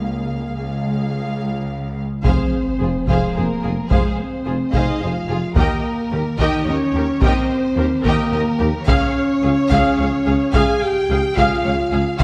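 Set in a 6/8 metre, this epic, dramatic film-score fragment is cut from a longer orchestral cue and opens on a Db chord, with strings and horns already sounding together. Two bowed violin sections carry a lush, vibrato-rich melody and a second line above distant violas. A dark, tightly blended French horn section holds sustained chords, while clear double basses and cellos form a bass foundation in the background. At 2.2 seconds the harmony lands on F minor and the scene opens up: close, dry taiko drums struck with heavy sticks enter alongside a mellow tuba doubling the low end. A huge sub drop rumbles beneath this impact until 3.9 seconds, and the music then moves through Eb and back to Db, all bathed in the lingering ambience of a reverberant scoring stage.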